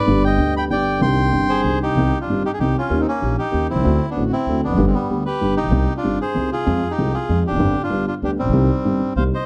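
Sultry and tense, this brief rubato tango excerpt in 3/4 sets a reedy, smooth bandoneon melody up front over a dark, mellow, boxy grand piano accompaniment with deep bass and a woody pizzicato upright bass, all three parts playing from the start, the piano and bass through about 9.3 seconds and the bandoneon to 9.5 seconds, moving through chords such as Cm, Eb7, D7 and Fm before landing on Cm at 8.5 seconds, with light reverb in a dark production.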